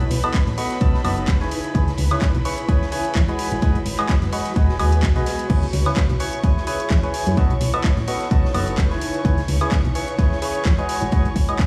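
Bittersweet, soulful piano house, cut from a longer piece, built on a hollow, nasal percussive organ stab riff with chorus and dub echo, pumping over a round, punchy FM bass and a cloudy granular pad and dark bowed string section sustaining chords in the background. An overdriven house drum kit with bright hats, handclaps, woodblock and crash sits beneath an up-front electronic kick that enters at 0.3 seconds, while a very quiet, airy acoustic jazz kit adds ride cymbal and snare from 0.1 seconds. The whole mix sounds as if played on a big sound system in a bare stone room, lending a reverberant, roomy edge.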